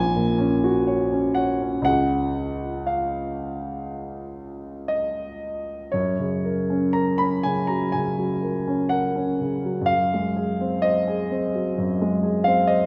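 Rubato phrasing in 4/4 gives this romantic classical nocturne for solo piano a serene, tender flow, taken from a longer piece. A warm, natural grand piano sits up front, spanning A#1 to B5, set in a wet recital-hall reverb. A new section begins at 5.9 seconds, and at 9.9 seconds the harmony moves to a G#7 chord over F#.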